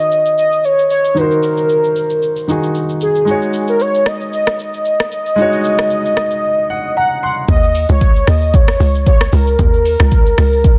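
Dry, with a dense, heavily limited modern master, this short amapiano excerpt carries a late-night, soulful mood at 114 BPM in 4/4, its 16ths swung at 55% in Eb dorian. A velvety synth lead, smooth and sustained with chorus, vibrato and tape echo, carries the melody from start to finish. A polished baby grand piano sits up front in accompaniment over Ebm7 and Ab7sus4, then takes a fill during a break at 6.4 seconds. The electronic afro-pop kit brings a deep kick, metallic hi-hats, rim clicks and shaker, with a tape-warm tone and soft clipping on the snare. At 7.5 seconds the piano stops and the music drops onto Eb5, where a tight, punchy FM log drum bass with a noise layer enters, its fast attack decaying in the low register alongside the lead and drums.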